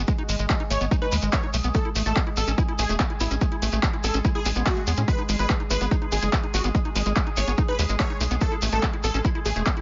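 Alien and hypnotic, this psychedelic trance excerpt drives at 144 BPM in G# phrygian, with an overdriven, up-front electronic kick, a tight, punchy sequencer bass, a squelchy, gritty acid bass riff with dub echo, an overdriven electronic kit of handclaps and bright hats, a grainy acoustic shekere, a detuned supersaw stab melody entering at 0.7 seconds through phaser, and a chorused drone of moving overtones, all sitting in a digital ambience as the chords shift between G#5 and A5.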